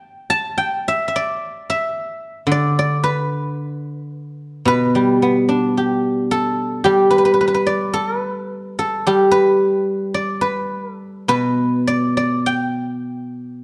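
A silvery, ringing solo guzheng sits up front in a moderate stage reverb, playing a flowing, elegant Chinese traditional passage in G gong mode at a rubato 54 BPM in 4/4, its fingerpicked acoustic tone spanning B2 to A5 across this 13.6-second excerpt cut from a longer piece.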